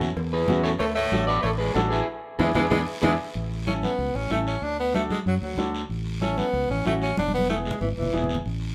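An edgy, close-miked tenor saxophone carries a second line from 0.3 s and takes a solo at 3.3 s in this festive, joyful cumbia clip at 188 BPM in A major. Until 3.1 s, a twangy, slightly broken-up electric guitar with spring reverb plays the melody over very quiet, ringing cowbell and timbales, with a band accent and a drum fill closing the first section. Throughout, a round, punchy fingered electric bass sits up front beside a clear, woody upright piano with audible action noise, while damped congas in the background and a raspy guiro keep the pulse, all played live in one room with moderate reverb.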